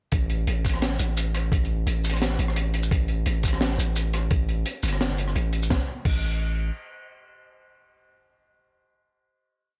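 A spacious, cinematic half-time drum and bass piece opens straight into its drop, with a gritty, thumpy, pitched-down kick, a crunchy breakbeat kit of rim clicks, shaker, closed hi-hat, high-tuned snare and dark crash cymbal, and a deep, sine-like 808-style bass playing chopped, decaying phrases. The saturated, rolled-off drums sit up front beside the mellow bass in a dry mix with little reverb. The drums stop at 6.2 seconds, the bass sustains until 6.7 seconds, and the final note carries the piece to its close at 8.5 seconds.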